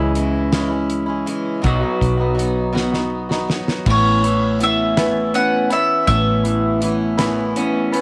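Lightly reverberant studio sound frames this nostalgic, hopeful folk and heartland rock excerpt in a slow 6/8 at 54 BPM, where a twangy, slightly broken-up electric guitar riff with spring reverb sits up front over a boxy swing-style acoustic guitar, a round, punchy fingered bass and a dry 70s drum kit with fat snare and tight kick, moving from C#m to B before a drum fill at 2.8 seconds leads into an Aadd9 passage where a bright, double-strung bowl-back mandolin melody enters at 3.9 seconds.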